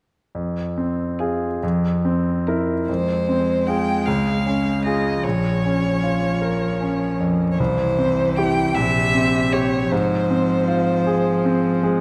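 Yearning and solemn, this slow romantic movement for piano trio in F minor moves at a rubato 51 BPM in 6/8, with a bright, brilliant concert grand laying down deep-bass accompaniment from 0.3 seconds, a smooth, rich violin singing the vibrato-laden melody up front from 1.2 seconds, and a close, even cello adding a bowed second line from 2.9 seconds, all set in a moderate concert hall reverb as the harmony drifts from F minor through D-flat and B-flat minor to C and then back toward F minor before this fragment of a longer piece breaks off.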